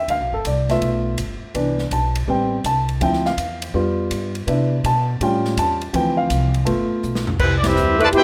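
This short, joyful big band swing excerpt in C major moves at 164 BPM in 4/4 with a strong swing feel, opening on a warm baby grand piano that carries a solo through the first 7.4 seconds with a natural, short-sustained tone placed up front. Beneath it, a woody, thumpy upright bass plucked on gut strings and a swinging drum kit, with a punchy kick, medium-tuned snare, hi-hat, ride, crash and toms, sit back in the mix with an airy, polished sound. The harmony moves through jazz changes such as Cmaj7, Am7, Dm7, G7 and an A7b13 before settling on Cmaj7 at 7.4 seconds, just after a drum fill. A dark, vintage saxophone section then holds brief sustained chords, and at 7.6 seconds the band strikes an accent, with a clear trumpet section taking the melody and a mellow trombone section carrying a second line, both with light vibrato and up front. Light reverb and small room ambience give the whole thing the rough, intimate character of a home demo mix.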